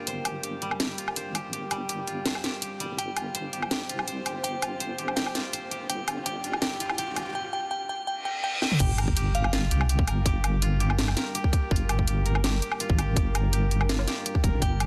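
A half-time drum and bass groove, dark and heavy, rides an overdriven kit with a cracking snare, bright hats, toms and woodblock, under a deep, wobbling sawtooth bass and a moody, evolving analog pad pumping in the background. Dry, woody koto arpeggios run throughout, while a glassy FM bell carries a brief melody through a filter sweep as a riser and reverse cymbal build tension toward the drop at 8.8 seconds. There a tight, overdriven electronic kick punches in up front with a sub-drop impact, all within a dense, heavily limited mix with light reverb.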